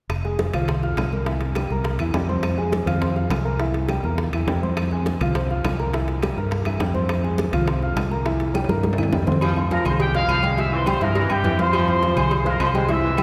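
Salsa at a fiery, passionate 206 BPM in F harmonic minor, alternating between Fm and C7 in a cavernous cathedral reverb, with a round, punchy fingered electric bass up front and a woody upright piano alongside the congas, high-tuned bongos and cowbell, ringing timbales and agogo bells, and claves, until a drum fill at 8.5 seconds ushers in a present trombone section at 9.4 seconds and a bright, tight trumpet section carrying the melody with light vibrato from 9.7 seconds.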